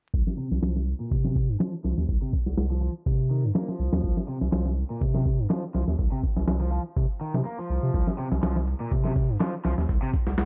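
A saturated sub bass sits up front in this gritty, funky breakbeat fragment in C minor, its deep, thick sine tone striking with a fast attack and sustaining from C2 to C3. Beside it, a dusty soul drum kit in a sampler style thumps along at 123 BPM in 4/4 with a 54% swing on the sixteenths, its compressed kick, medium-tuned snare and hi-hat re-recorded in a small room and filtered to a muffled, lo-fi tone. A cranked stack guitar enters at 0.4 seconds with a bright, overdriven, picked riff between Bb2 and Bb3. It sits lower in the mix, roughened by vintage 12-bit sampler grit and low-pass filtering. Filter sweeps run across the drums, sub bass and guitar for the whole stretch, which ends at 10.5 seconds. The sound is dry and close, with vinyl crackle and a low-pass filter over the whole mix.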